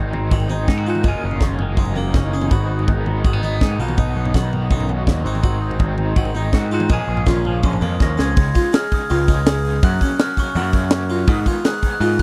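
A twangy, phaser-tinged clean guitar, a double-tracked overdriven garage guitar riff with tremolo and a growling, up-front overdriven picked bass open this wistful, restless math rock and midwest emo fragment at 164 BPM, joined at once by a crisp fusion kit with high-tuned snare and punchy kick and by close-miked, plucked Italian-style harpsichord arpeggios, before a drum fill at 8.0 seconds brings in a dark, bell-like glockenspiel melody on soft plastic mallets through tape echo and the twangy guitar drops out at 9.8 seconds, captured in a dry, close 1970s-style studio sound.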